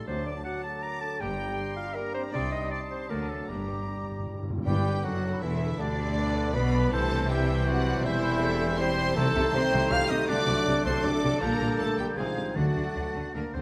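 Heard in a moderate recital-hall reverb, this urgent, dramatic, fast romantic orchestral passage in 3/4 sets a lush, vibrato-laden violin section on the melody above clear clarinet and oboe, an airy, hollow flute and a very quiet, rich second violin section on second lines, with mellow bassoon and a smooth viola section in accompaniment, distant cello and double bass sections holding the bass, background French horn chords, very quiet ringing fingerpicked harp arpeggios and calf-headed timpani that fill from 3.5 s, until a close-miked, tight trombone section and dark, vintage trumpet stabs enter at 4.7 s as a new section begins.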